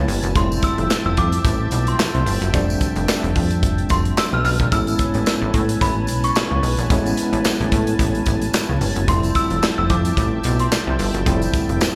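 A swung 16th-note groove at 110 BPM drives this smooth, feel-good early-eighties boogie funk excerpt, with a modern studio drum kit up front (a punchy kick, medium-tuned snare, hi-hat and handclaps), a plucky, up-front analog bass with a filtered sawtooth bite, and a bright tambourine jingling in the background. A barky, overdriven tine electric piano through a combo amp comps with tremolo and slapback echo, while a lush, detuned unison pad with chorus sustains the harmony as it moves from Fmaj9 to Amaj9 at 4.7 seconds and back at 9.1 seconds. Above it all, a mellow, inharmonic FM synth chime carries the melody from 0.4 seconds, ringing and warbling through ensemble chorus and slapback echo, and the whole performance is heard as a live gig through the venue's PA with club reverb.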